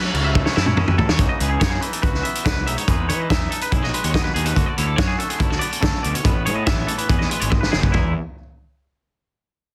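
Dry and densely limited, this short cut from a longer math rock and midwest emo piece feels playful and wistful at 142 BPM in a straight 4/4. A loose indie drum kit sits up front with a fat snare, a punchy kick and a gritty, saturated tone with a rolled-off top, and it plays fills beginning at 0.4 seconds and again at 7.5 seconds. Two clean, compressed, twangy electric guitars carry the harmony: one plays accompaniment, and the other picks bright arpeggios treated with subtle chorus. Underneath, a picked electric bass adds weight with a warm fuzz. A faint, overdriven lead guitar carries the melody only in the opening 0.7 seconds. The chords move from F#m7 through C#m11, Dmaj7 and Amaj7sus2 before arriving on E.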